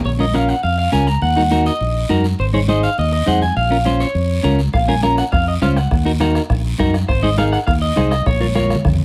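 A round, up-front fingered bass and a raspy, saturated guiro open this driving, danceable cumbia fragment in Bb minor at 204 BPM, cut from a longer piece. A slightly broken-up electric guitar through a small old amp carries a picked second line high above, while high-tuned congas with a thick-skinned, soft-handed sound sit close yet in the background. A clean, twangy electric guitar takes the solo, its picked lines warm and forward in the mix over a cycle of Bbm, Ebm and Ab. At 4.7 seconds a soft-beatered bombo joins with a small-room acoustic thump, and a drum fill arrives at 8.6 seconds. Light reverb gives the whole a gentle sense of space and a warm, lively dance-floor pulse.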